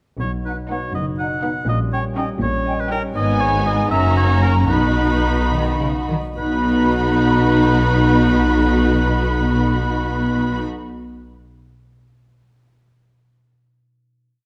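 A muted violin section carries the tune in this short, playful and whimsical film cue, its veiled, con sordino tone smoothed by light vibrato. The piece moves in a lilting 6/8 at roughly 69-82 BPM in B major, with a warm oboe and a mellow, hollow small flute group weaving second lines around it. A second violin section and the violas fill in with lush pizzicato and bowed chords in the rhythm of the tune, while a distant, roomy clarinet adds very quiet after-beat chords. Sombre French horns sustain chords beneath, and muted cellos and double basses anchor the bass, the basses sitting up front. The harmony passes from B through D#7/A# and G#m to F# and home to B, the tempo slowing from 2.4 to 6.4 seconds before the ensemble settles on a held final chord. A fingerpicked concert harp ripples broken chords throughout, its ringing notes lingering alone until 11.2 seconds in light reverb.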